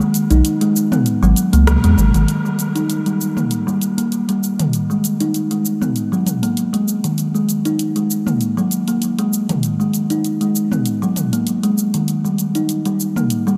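Light reverb and a digital ambience give this short cut from a longer organic downtempo piece a hypnotic, mystical air at 98 BPM in 4/4, with a gentle 16th-note swing. Up front, a woody, hollow-boxed kalimba plays mellow, ringing arpeggios from start to finish, its fingertip plucks softened by a low-pass filter and trailed by digital delay. Beneath it, a layered electronic deep house kit of dark hi-hats, rim clicks, shaker and toms sits well back in the mix. A round, sine-like sub bass with a fast attack sustains deep notes from 0.3 s until 2.3 s, and the band lands an accent just before it drops away. From 2.3 s the harmony moves through D#, G#m9, F#69 and D#madd11 while a filter sweep shapes the kalimba to the end at 13.6 s.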